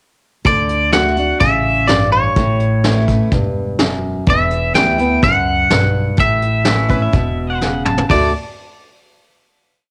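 Honky-tonk and classic country in D major at 126 BPM, heartfelt and sunny, with a twangy, compressed electric guitar carrying a motif-based melody up front over a full-bodied dreadnought acoustic guitar alternating bass and strum with bass runs, a woody, thumpy upright bass playing a two-beat root-and-fifth line with walk-ups, and a vintage brush kit with a fat snare and punchy kick in a country two groove, before a fingerpicked pedal steel guitar enters at 6.9 seconds with volume swells and answering blues licks, a drum fill at 7.6 seconds leads into a final D chord at 8.1 seconds, and the whole piece sits in a small room as a home recording on cassette.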